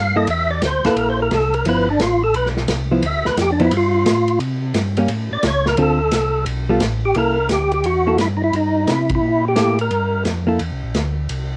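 Soul jazz organ trio in a greasy, bluesy mood, swung in four and cut from a longer piece. A fat, lightly overdriven tonewheel organ carries the melody as a solo up front, its third-harmonic percussion and key click colored by chorus vibrato, a slow rotary speaker and cassette tape grit, until the solo gives way at 7.2 seconds. Beneath it, a second tonewheel organ plays the bass line with a mellow, round, clean tone, also through chorus vibrato and slow rotary. A dark, fingered hollow-body electric guitar adds compressed, clean accompaniment close to the listener, while a vintage acoustic drum kit of hi-hat, kick, ride and snare sits further back, with a punchy kick, dark cymbals and a rolled-off top in a pumping small room. The band hits an accent at 9.1 seconds in a moderate booth ambience, the home cassette recording giving the whole take a lo-fi vintage feel.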